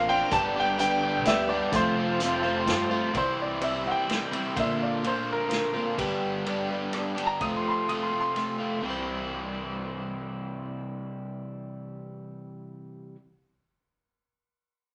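Folk rock and heartland rock in a nostalgic, jangly three-beat lilt, this excerpt pairs a crunchy, bright double-tracked electric guitar riff up front with a boxy, picked swing-style acoustic guitar, a woody pizzicato upright bass in the background and a punchy vintage kit with a rolled-off top, while a lightly overdriven tonewheel organ with key click and slow rotary speaker holds chords until 3.1 seconds, when a clear, open concert grand piano, carrying the melody from the start, steps into a solo running to 8.8 seconds, all in a wet studio reverb.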